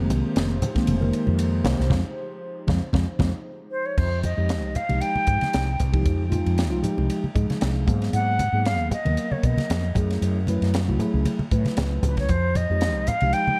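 Electric jazz fusion at 116 BPM in F minor, slick and nocturnal, with a light swing on the sixteenths, cut from a longer piece. A mellow tine electric piano with lush chorus comps over a growly, round fretless bass up front, a crisp drum kit with dark cymbals and a punchy kick, and damped, low-tuned congas, while a warbly, lo-fi tape-like pad sustains chords until 3.9 s and a silver concert flute, airy with vibrato and tape echo, takes the melody from 3.7 s. The harmony moves from Fm11 through Fm9, Abm9 and Gbm9, set in a dark, warm production with small room reverb.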